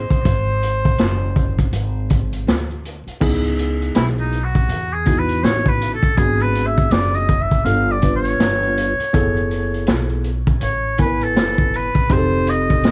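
A swung sixteenth-note groove on a vintage drum kit, entering at 0.1 s with punchy kick, medium-tuned snare, hi-hat and dark crash cymbals under a cassette haze, sets a cool, nocturnal jazz-hop feel for this short cut from a longer piece. A woody pizzicato upright bass sits low beneath a worn, slightly out-of-tune tine electric piano that lays down mellow jazz chords. Up front, a distant, roomy oboe plays a classical-style solo through tape echo, all wrapped in light reverb and the vinyl crackle of a home cassette recording.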